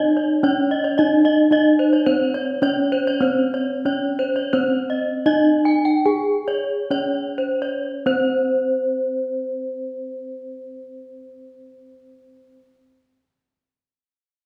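A full, dry bronze metallophone struck with a wooden mallet carries the melody up front, its paired tuning giving a shimmering beat to each ringing note in this brilliant, hypnotic gamelan excerpt in 4/4. A second, darker metallophone played with a horn mallet spins smooth arpeggios an octave higher, and both parts sound from the start until 12.6 seconds. The tempo sits between 60 and 110 BPM and slows from 2.1 to 7.9 seconds, where a new section begins, all set in a recital hall's reverb as if heard from further back in the room.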